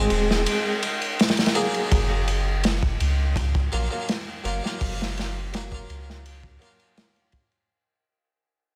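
Smoky and melancholic, this trip hop fragment cut from a longer piece sets a crunchy, saturated breakbeat kit with dark cymbals and a tight kick against a deep, round dub sub bass that stops at 6.6 seconds, while a plucked harpsichord carrying harmonic tremolo, vintage 12-bit sampler grit and tape echo moves from Ab7 to Gbmaj7 at 1.9 seconds as a fade-out begins in a small room.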